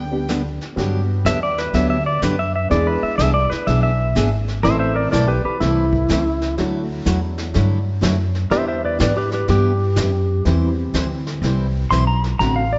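Cheerful and swinging, this western swing excerpt in G major moves at 124 BPM, with a woody, growly upright bass up front, a bright picked dreadnought acoustic guitar, a dark, slightly detuned upright piano with audible action noise, and a vintage brush kit with a punchy kick in a small room, while an electric slide guitar solo runs from 0.8 s and a clean, twangy lap steel joins at 1.3 s as a second line under light reverb.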